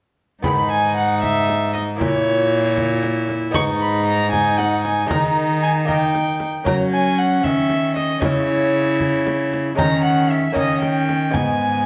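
Rhythm comes first: a straight 6/8 lilt at 77 beats per minute, counted in dotted quarters, carries this solemn, rustic renaissance-style consort dance in G# minor. A single bowed violin with a dark, nasal, period-style tone leads the melody in its upper register, sitting up front yet sounding slightly distant. Beneath it, one viola adds smooth-topped inner harmony, while a single cello gives a rich, close bass line with a reedy gut-string edge. A fingerpicked lute with double strings and some octave-doubled courses supplies delicate accompaniment in the background, and a deep frame drum, played with hard hands and recorded close and dry, marks the pulse until 11.6 seconds. The harmony moves from G#m through an A# diminished chord, a suspended D# resolving, F# and C#m before a D#7 cadence returns to G#m near 11.3 seconds, all held in a moderate recital hall reverb in this short section cut from a longer piece.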